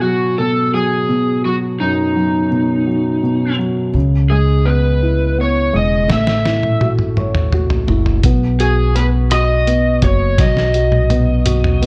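Heartfelt and tender, this slow six-eight pop ballad at 56 BPM opens with an overdriven slide guitar singing the melody over a soft, felt-muted upright piano with audible action noise, then a woody, growly pizzicato upright bass enters at 3.9 seconds and a muffled, pitched-down lo-fi sampler-style drum kit with a thumpy kick arrives at 6.1 seconds with a fill, all in a dark production with light reverb.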